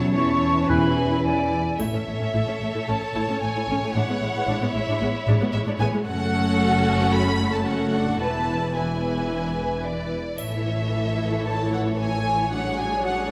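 A moderate scoring-stage reverb gives this fast, dramatic romantic orchestral passage, cut from a longer piece, a full, hall-like bloom. In A major at 111 BPM in a straight 4/4, the music feels lively and graceful, with a lush first violin section carrying the melody with expressive vibrato and soft attacks while a second violin section adds a smooth-topped inner line. Violas fill out the accompaniment evenly, and a close cello section in the background joins a focused double bass section on the bass. The opening 1.8 seconds are coloured by a mellow French horn section chord, hard-mallet timpani on calf heads, a pure, bright flute group, and fleeting touches from a very quiet clarinet and a distant, roomy oboe. After that the strings carry on with only a very quiet triangle adding glints at 1.8 and 10.4 seconds, as the harmony moves through A, F#m and E chords.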